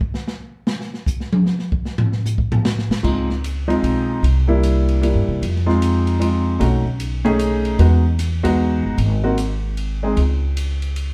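Small-group swing and bop jazz in a lilting 3/4, playful and warm in mood, heard as a short fragment lifted from a longer piece. An open acoustic drum kit takes a solo for the first 3.0 seconds, a dark, smooth passage of rolled-off cymbals, a medium-tuned snare, toms and a boomy kick. At 2.9 seconds a pizzicato upright bass with steel strings and a woody tone joins, followed at 3.0 seconds by a concert grand piano whose intimate, natural sound carries deep bass and audible action noise. The piano comps through chords such as Dbmaj7, C7, Fm7, Cb7, Emaj9 and Ab before dropping out at 10.2 seconds, leaving bass and drums to close at 11.1 seconds. The instruments sit up front, yet the mix is bathed in a wet club reverb that places the listener a little further back in the room.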